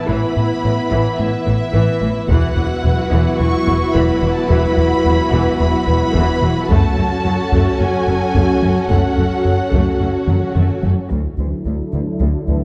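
Brooding and tense, this hybrid orchestral and electronic film cue in F# minor moves at 109 BPM in a straight 4/4, cut from a longer piece, with a rubbery, hollow square bass riff filtered under rich cello and double bass sections, a distant, clear violin melody above a second violin line, intense viola accompaniment, a silky chorused analog string pad and a dark, roomy French horn section holding chords in the background. A taiko ensemble with heavy sticks enters at 2.3 s, returns at 6.7 s and plays a fill before the harmony shifts from Asus2 through Esus2 and F#m to Dadd9 at 11.1 s, where a filter sweep carries the close. The production is dark and warm, set in a moderate scoring stage reverb.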